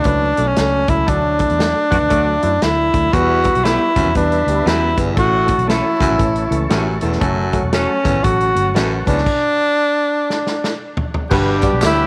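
An uplifting, danceable slice of uptempo 1960s-style soul, this excerpt swings in 4/4 with a breathy tenor saxophone up front carrying the melody, its whispered, intimate tone colored by scooped notes, vibrato and tape echo. Underneath, a barky, reedy electric piano sits in the background with light overdrive and fast tremolo, while a dark, round, foam-muted fingered electric bass and a natural acoustic drum kit with a punchy kick and medium-tuned snare drive the groove. A mellow horn section adds a tight second line at 1.9 seconds during a band accent, and from 3.1 seconds a bright, present baritone saxophone riff enters alongside a very quiet, flute-like tonewheel organ holding sustained chords through a fast rotary speaker. A slightly broken-up, lo-fi electric guitar through a small old amp adds picked stabs with harmonic tremolo until 8.9 seconds, before the band stops and a drum fill leads into a final Gmaj7 where the horns return with a background tambourine, tube shaker and group handclaps. 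Light reverb, studio ambience and vinyl crackle give the whole a vintage patina.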